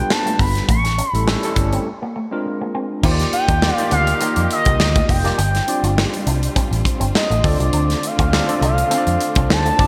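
Slick and bittersweet, this polished 1980s jazz-funk pop fragment sets a smooth, warbling portamento lead melody over gritty, barky overdriven tine electric piano, a twangy envelope-filtered guitar riff in the background, punchy gated-reverb drums with bright cymbals, and a dark, round muted bass, moving into a break at 1.9 seconds before a bowed string section with vibrato slides in at 3.0 seconds under a bright digital sheen and plate reverb.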